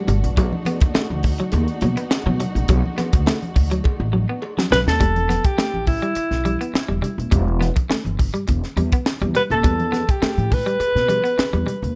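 This funk excerpt opens on lush, bowed string chords with gentle vibrato alongside a bright, clean semi-hollow electric guitar riff, setting up a driving, hypnotic groove at 104 BPM in 4/4 over a B7#9 chord. Up front, a crisp fusion drum kit with a punchy kick, high-tuned snare and hi-hat sits beside a woody, growly pizzicato upright bass. Ringing congas stay in the background, and a very quiet metallic cowbell comes and goes. A drum fill leads into the second section at 5.0 seconds, where the strings stop and the harmony moves to E minor. Just before that point, at 4.7 seconds, a breathy alto saxophone enters with a jazz-style solo melody up front, its scooped notes carrying tape echo. Guitar, bass, drums and congas carry on to the end of this cut from a longer piece, set in light reverb with a dark, warm production.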